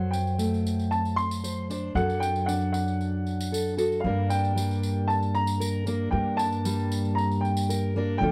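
Peaceful and hopeful, this short excerpt from a longer piece sits in an acoustic folk setting for a small band, moving at a steady 115 BPM in 4/4 with a straight feel. A dark, mellow upright piano carries the melody high in its range, its woody tone and long sustain placed up front in the mix. Beside it, a fingerpicked steel-string dreadnought guitar supplies the accompaniment, also close and present, while a pizzicato upright bass adds a growly, thumpy low end. A jingly tambourine plays quietly but close from 0.1 to 7.8 seconds. The harmony shifts from D7/F# to Gm at 4.0 seconds, all captured in a dry, close studio sound with a 1970s character.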